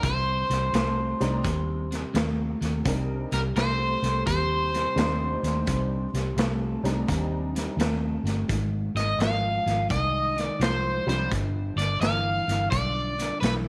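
Smoky and brooding, this electric blues shuffle in C minor rolls along at 85 BPM in 4/4 with swung eighth notes, cut from a longer piece. A bright, overdriven guitar carries the melody up front, while a second electric guitar, slightly broken-up and compressed through a small old amp with a phaser, plays the low riff. A dark, round, foam-muted fingered bass sits punchy and forward, and a vintage drum kit of hi-hat, tight kick and medium-tuned snare sounds gritty and saturated with a rolled-off top. A detuned, jangly honky-tonk upright piano adds woody accompaniment from 1.2 to 11.3 seconds. The harmony moves from Cm9 to Ab at 8.5 seconds and lands on G7, all set in light studio reverb with lossy compression artefacts.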